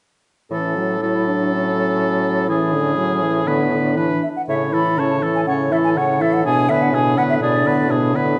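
A hollow, airy concert flute takes the melody from 4.2 s, its tongued notes carrying vibrato above the ensemble in this quick, spirited and graceful classical-period movement for wind quintet in A major at 122 BPM, played with a rubato feel. Beneath it, a clear, close-miked oboe carries a second line with light vibrato, while a mellow, soft-attacked clarinet and a warm French horn supply accompaniment and a bassoon anchors the bass on A2. The players sit in a wet recital hall with a 1.3 s reverb tail and a gently rounded top end, and the passage is cut from a longer piece.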